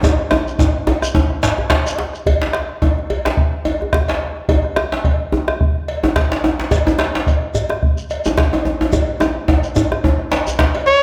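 A lightly swung 4/4 groove drives this festive, earthy West African drum ensemble, with a round, saturated bombo up front, a metallic, distant cowbell and two djembes, one tight and cracking, the other medium-tuned with buzzing metal rattles. A grainy, mellow shekere sits close and dry, drops out at 2.2 seconds and returns at 6.7 seconds, while drum fills open the passage and return near its close. Just before the cut, at 10.9 seconds, a vibrato-laden jazz trumpet with slapback echo steps forward for a brief solo note, all set in a moderate recital-hall reverb.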